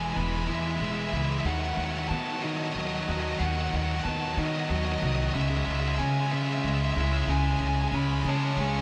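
Hopeful and euphoric, this rock build-up moves at 62 BPM in a straight 6/8, cut from a longer piece and steeped in a huge, dreamy ambient reverb. A warm, overdriven electric guitar carries the melody with delay, while a bright, clean semi-hollow guitar plays delayed arpeggios and a tight, distorted guitar drives a picked riff up front. A woody, thumpy pizzicato upright bass with gut strings anchors the chords from E through B/D# to C#m at 5.3 seconds.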